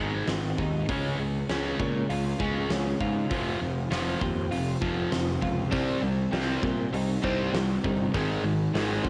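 Angsty and dark, this quiet-loud alternative rock fragment sets a clean, compressed twelve-string electric guitar's arpeggios with harmonic tremolo in the background beneath a bright, high-gain distorted guitar riff and a fuzzy overdriven picked bass, with a big acoustic rock kit of fat snare, tight kick and hi-hat entering at 0.3 seconds in a bright stone room, until an up-front, overdriven semi-hollow guitar riff touched with spring reverb joins at 5.7 seconds, all wrapped in the grainy hiss of a small-room home cassette recording.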